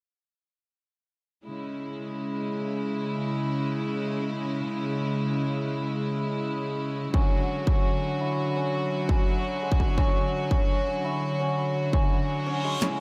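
A half-time drum and bass feel at 169 BPM in 4/4 frames this tense, dark excerpt in C# phrygian. A bowed chamber string section with an earthy, close tone enters up front at 1.5 seconds, holding sustained chords over C#m, and its sound pumps with sidechain compression. At 7.1 seconds the harmony moves to D as a distorted, tape-warm electronic kick drum arrives, joined by a shimmering, ringing santur playing arpeggios through a low-pass filter and delay. A reverse cymbal and riser starts building at 12.3 seconds, and a short, layered drum kit figure with a woody snare and bright hi-hats, re-recorded in a small room, briefly surfaces just before the cut. The dreamy mix is soaked in a huge ambient reverb with a long tail.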